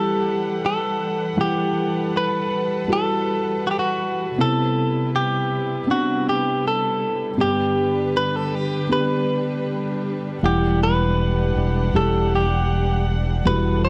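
A clean, compressed electric guitar carries the melody up front with a slapback echo in this emotional, melancholic pop excerpt in E minor at 79 BPM, moving from Emadd9 through Cmaj7 and G. Beneath it, a felt-muted upright piano plays dark, mellow accompaniment with audible action noise, while a bowed studio string ensemble holds soft-attack, sul tasto chords with light vibrato. A fretless electric bass, direct and amped with transformer saturation, enters at 10.4 s as the harmony returns to Emadd9, all captured as a dry, close 1970s-style recording in a small room.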